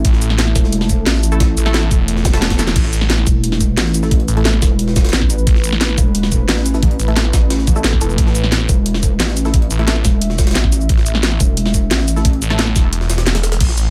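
A dark, mechanical drum and bass drop opens at full force, with a knocking electronic kick and a cracking-snare kit with bright hats up front over a swirling phased saw bass and a heavy pulsing wobble bass, while a deep, moody pad sits in the background, a very quiet gritty jungle kit with a high-tuned snare lurks beneath, muted dub chord stabs with delay flicker in from 1.3 seconds, a faint zap lands at 2.2 seconds, and the kick drops out at 12.9 seconds.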